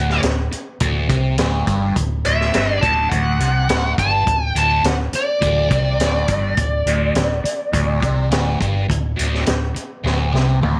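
Blues rock in the power-trio mould, with a strong southern rock streak, this gritty, driving clip moves at a straight 104 BPM in 4/4 and sits in D mixolydian. A picked, distorted lead guitar carries the melody up front between D5 and A5, its tone warm and colored by slapback echo. Beneath it, a dark, double-tracked overdriven guitar plays a low riff from D2 to C3, colored by phaser. A vintage fingered bass, foam-muted and amped, gives a round, punchy bottom end from D1 to C2. The acoustic drum kit, heard from 0.1 seconds, sounds mid-forward with a high-tuned snare, punchy kick and rolled-off top, and a drum fill arrives at 10.1 seconds. The whole fragment, cut from a longer piece, sits in a small room ambience.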